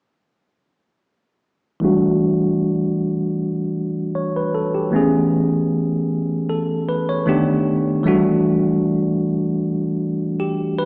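The recording sits in a generous, wet reverb that suggests a church or concert hall, yet it reaches the ear with a small-speaker sound. This short R&B fragment, cut from a longer piece, features a lone tine electric piano playing accompaniment from 1.8 to 10.9 seconds. Its tone is bell-like and bright, placed up front, and a low-pass filter sweep shapes its sound across the whole passage. The harmony moves from Em11 to Amaj9 at 4.9 seconds, passes through B7alt, and comes back to Em11 over a straight 4/4 feel. The mood is relaxed and warm, an unhurried moment built on lush extended chords.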